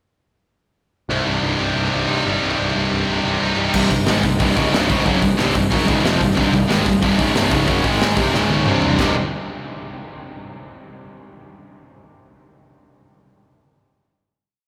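Heavy and dark, this short heavy metal piece in C minor charges along at 182 BPM, with an up-front scooped high-gain guitar and a tight distorted guitar playing picked arpeggios and power-chord riffs over a growling overdriven bass that doubles the riff and a very quiet chamber organ pad of sparkling, chiffy flute stops, before a polished drum kit with a high-tuned snare and punchy kick crashes in at 3.7 seconds and a double-tracked thick fuzz guitar follows at 3.8 seconds, a drum fill at 8.3 seconds leading to a final chord, all bathed in cathedral reverb with a rough, tube-saturated rehearsal-room grit.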